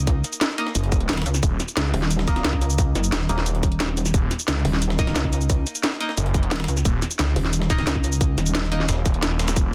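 Tense and dark, this short cut from a longer dark technical drum and bass track runs in a straight 4/4 with a dense, heavily limited modern sound and a digital ambience. A tight, up-front electronic kick anchors the drums alongside a layered kit of cracking snare, metallic hats and shaker, re-recorded in a small room, while a gritty, tape-warm, pitched-up breakbeat kit with a medium-tuned snare sits in the background behind high-pass filtering. From the start, a pulsing, heavy pluck wobble bass with chorus and saturation fills the low end. At 0.8 seconds a snarling distorted saw bass joins it, aggressive and growling, with detuned unison voices and a moving notch. Above it all, a bright, nasal band-passed chord stab with ring modulation plays decaying stabs through phaser, lush chorus and delay.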